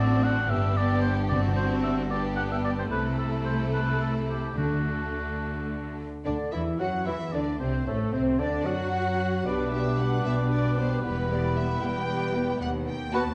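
A rich violin section carries the melody of this quick, urgent and stormy classical-period movement for symphony orchestra, cut from a longer piece and moving in a rubato 6/8 at 76 dotted-quarter beats per minute. A second, background violin line and a distant oboe weave beneath it, while a clear, focused viola section supplies accompaniment over a cello section and a close, studio-recorded double bass section that anchor the low end. Timpani strike twice in the opening section, first at 1.3 seconds, as the harmony moves between D7 and G chords. At 6.3 seconds a second section begins, adding a hollow, pure flute, a vintage-toned bright clarinet, a soft-attacked bassoon and a dark, roomy French horn section holding sustained chords in the background, with the harmony passing through D9, G/B and Em before closing on B/D#. The strings are bowed with vibrato, and the violins, cellos and basses sound smooth and even. 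A recital hall reverb surrounds the dark, warm production.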